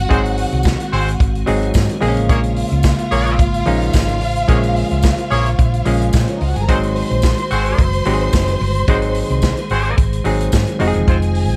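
A punchy vintage drum kit with gated reverb drives this sultry disco excerpt at 109 BPM, its kick, snare and hi-hat joined by a round, dark fingered bass on a hollow-body short-scale electric and a faint, jingly tambourine from 0.6 seconds. A stringy, mellow clav sits up front while a clear, tight horn section plays octave-doubled stabs, and a piping tonewheel organ holds chords in the background through chorus vibrato and a slow rotary speaker. A distant, lush violin section, bowed with vibrato and portamento, carries a second line over Ab7, Bbm7 and Fm7 chords.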